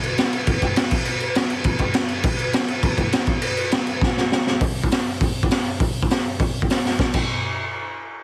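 The recording is dry and heavily compressed, with a squashed, radio-like sound. It's a short, energetic punk cut taken from a longer piece, and it carries a rowdy mood at a driving, straight four-beat pulse. A raw garage drum kit drives the passage, recorded acoustically in a small room and placed up front with a mid-forward, gritty, saturated character and a rolled-off top. A high-tuned snare cracks over a boomy kick, while hi-hat and crash cymbal fill out the kit. Drum fills around 4.0 and 6.8 seconds mark the shifts between the sections of this brief, scrappy passage.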